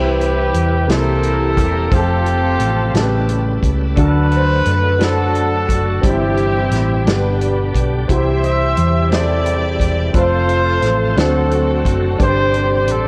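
A distant, scooped trumpet with tape echo and soft, floating bowed strings share the melody over a deep-voiced grand piano, a shouting tonewheel organ with slow rotary swirl in the background and a round, up-front hollow-body bass, joined at 0.2 s by a dry, natural soul drum kit, in this soulful, hopeful slow gospel excerpt in C major at 58 BPM in 6/8, colored by light reverb and the warbling pitch drift of worn cassette tape.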